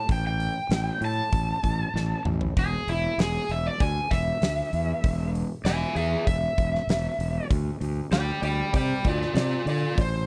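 A dry, close 1970s-style studio sound with small room ambience frames this brooding, smoky blues rock and southern rock power-trio excerpt. An up-front, overdriven slide guitar with slapback echo plays a bright solo throughout, over a growly fuzz bass and a huge arena drum kit with a fat snare and punchy kick that adds a fill at 1.9 seconds, as the chords move from Gsus2/A to E and then Dm7.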